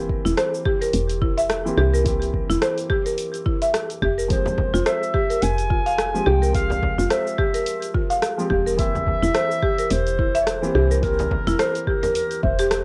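A buzzing marimba played with medium mallets sits up front, its dry, hardwood arpeggios touched with analog delay and plate reverb as it runs through this hypnotic, meditative organic downtempo cut from a longer piece. It moves at 107 BPM in 4/4 with a swung sixteenth-note feel. Beneath it, a round, dark FM bass with a fast, decaying attack pumps against the sidechain. A felt-muted upright piano adds intimate, hushed accompaniment with its own pumping and delay. The overdriven electronic kick and a layered deep house kit of hi-hat, cabasa and rim click carry a gritty cassette character, sounding re-recorded in a small room. At 4.3 seconds a distant, roomy clarinet enters with a soft-attacked classical-style solo, and at 4.5 seconds a close, dry frame drum joins, while the harmony moves from C7/E to Fmadd9 and back over a lightly reverberant, home-cassette sound.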